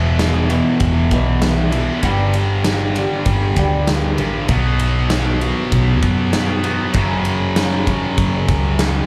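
Heard as a live club gig through the venue's PA, this short cut from a longer piece has only a light touch of room reverb and a loud, present mix. It is quiet-loud alternative rock at 98 BPM in a straight 4/4, bittersweet and anthemic, moving through power chords on E5, G5, B5 and F#5. A picked acoustic archtop guitar plays bright arpeggios with audible finger squeak and a slapback echo, dropping out at 4.5 s. Two distorted electric guitars carry the riff throughout: one sludgy and overdriven, sitting in the background, the other tight, bright and distorted with its own slapback echo. Up front, a dark, round hollow-body short-scale bass played with the fingers anchors the low end, while a big acoustic rock kit enters at 0.2 s with a punchy kick, a medium-tuned snare and a bright ride cymbal in a big room.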